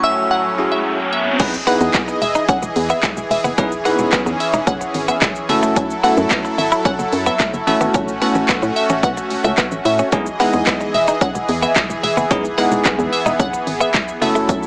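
A straight 4/4 pulse at 110 BPM drives this carefree, summery dance-pop excerpt in E major. It opens on a glassy synth bell, a crystalline wavetable pluck treated with chorus and digital delay, and a lush, detuned supersaw pad, joined at 0.6 seconds by a bright tine electric piano, while an electronic riser climbs from 0.4 seconds into the drop at 1.4 seconds. There a punchy analog drum machine arrives up front with kick, handclaps, hi-hat, shaker and crash cymbal. It is joined by a hollow, organ-like FM bass and a clean, direct-recorded electric guitar riff colored by analog chorus. The pad, electric piano and bass pump against the sidechain as the chords move from Emaj7 through F#m7 and A6, returning to Emaj7 at 10.1 seconds. Light reverb and digital ambience give the mix a small-speaker character.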